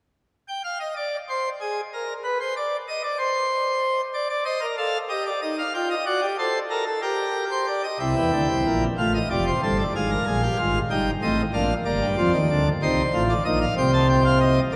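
A full, brilliant pipe organ plenum with bright mixtures sits up front in a wet cathedral reverb, playing a solemn, driving baroque-style three-part fugue in C minor at 63 BPM in 6/8, ranging from F1 to A5 in this short excerpt cut from a longer piece, with harmony moving from Amadd11 through Ebmaj9 and D7/F# before reaching Cm near 12.8 seconds and closing on F/C.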